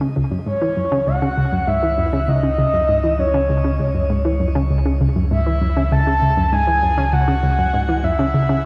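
Ambient, sequencer-driven space music with a hypnotic, expansive mood, cut from a longer piece, where a nasal, wave-folded analog pluck riff sits up front with chorus, shimmer reverb and tape echo over a deep, evolving round analog bass holding a single low note on a C#m chord, while a breathy, flute-like synth lead with vibrato and lush chorus enters at 0.5 seconds to float a high melody through the same shimmer and echo, all set in a dark production within a wet concert hall.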